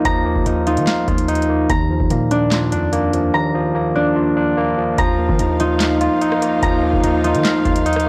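This dry, gritty hardware recording with digital ambience frames a menacing, brooding hip hop and trap excerpt in a half-time feel, built on a barky, overdriven tine electric piano accompaniment pushed through a combo amp and placed up front, while a concert harp rings out bright, thumb-plucked arpeggios through analog delay. Underneath, a long, deep sine-toned 808-style bass decays beneath a booming analog drum machine, its overdriven, up-front kit re-recorded in a large room, with a deep kick, crisp snare, metallic hi-hat, handclaps and rim clicks. At 5.0 s a lush symphonic string section enters in the background with sustained, bowed chords full of vibrato and portamento.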